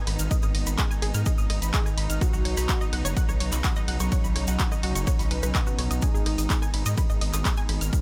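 An up-front, punchy electronic kick drives this dark, hypnotic melodic techno excerpt at 126 BPM in straight 4/4, set in G# minor. Beneath it, a gritty, saturated synth bass built from square, sawtooth and sine waves with oscillator sync snarls aggressively and evolves as it goes, pumping under sidechain compression. A distant, woody symphonic string section holds bowed sustained chords with vibrato, moving from G#m to Badd9 and back to G#m, while a detuned sawtooth unison pluck with a short decay runs arpeggios through cassette tape colouring and digital delay. A fat, mellow analog lead, thickened by a sub octave, wave-folding and lush chorus, carries the melody from 1.7 s until 6.6 s. A dry analog drum machine adds handclaps, hi-hat, ride cymbal and rim click, and a grainy, bright tube shaker in a small room fills out the percussion, all within a dry overall sound.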